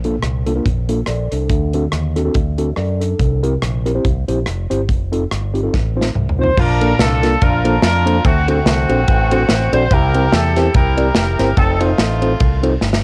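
A small room's light reverb and the soft grain of a home cassette recording frame this short cut from an uptempo gospel piece at 143 BPM in 4/4, swung on the eighths in Bb major, its mood reverent and hopeful. A mellow, clean tine electric piano carries the accompaniment through the chords from Bbmaj7 to D7, C7 and F7, ranging from Bb2 to D5 with a tape tint of its own. Underneath, a fingered electric bass sits up front, bright and direct through an envelope filter and transformer saturation, while an acoustic studio drum kit with bright cymbals, a medium-tuned snare and a punchy kick drives the groove using hi-hat, ride, rim click, crash and toms. A drum fill from 5.7 to 6.6 seconds leads into the second section, where a tight, vintage horn section enters at 6.4 seconds to take the melody in a jazz style with light vibrato and a warm, taped tone. Another fill arrives at 12.8 seconds as the passage closes.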